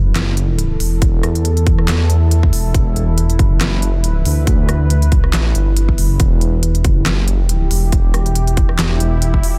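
Deep dubstep with a dark, cavernous mood, moving in a half-time feel with a light swing on the sixteenths. A rumbling, detuned saw bass sits up front from the very start, its saturated, beating tone filling the low end. The dubstep kit comes in almost at once with a deep snare, crisp hats, handclaps and rim clicks, and a punchy electronic kick joins at 1.0 seconds, both carrying a tape-warm, layered character. Behind them, a moody ambient pad holds sustained chords with a slow attack, its detuned unison saws thickened by chorus and its own reverb so it seems to evolve in the background. An electronic swell enters at 9.0 seconds, closing this brief cut from a longer piece with its dense, heavily limited modern master.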